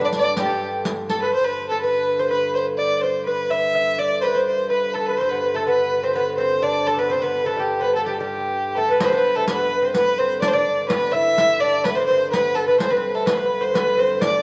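Ancient and rustic, this medieval dance excerpt in G major moves at 126 BPM in a straight 2/4, led up front by a single dark, woody fiddle with light vibrato, backed by a ringing fingerpicked concert harp, a delicate double-strung lute that drops out after 0.8 seconds and returns at 5.2 seconds, a reedy, breathing harmonium drone, and a band-limited riq with bright jingles that returns at 9.0 seconds, all set in a wet echo-chamber reverb.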